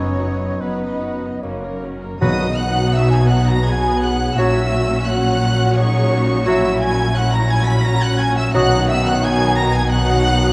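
Lyrical and serene, this slow romantic orchestral passage in B major and 3/4 at 85 BPM sways with rubato as a rich, intense violin section with light vibrato carries the melody over a distant, softly bowed second violin line, a mellow, hollow flute ensemble, a bright clarinet, a punchy oboe and a bassoon, while lush, even violas, warm sustained French horn chords, a very quiet ringing harp in arpeggios, expressive cellos with portamento and a focused, close double bass section ground the harmony, with trombones and round, soft-mallet timpani entering at 2.2 seconds, the whole passage set in a wet concert-hall reverb.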